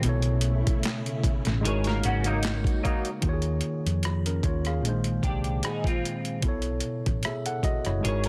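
Dense, heavily limited and bathed in digital ambience, this sultry, soulful neo-soul R&B excerpt with lightly swung 16ths puts a worn, slightly out-of-tune tine electric piano with light overdrive up front over a round, punchy hollow-body short-scale bass and a gritty, sampler-style boom bap kit with a thumpy kick, handclaps and rim clicks, while a silky string machine sits in the background until 3.2 seconds, a clean semi-hollow guitar with analog chorus adds a second line from 1.6 seconds, and a mellow horn section lands soft-edged stabs at 2.3 seconds.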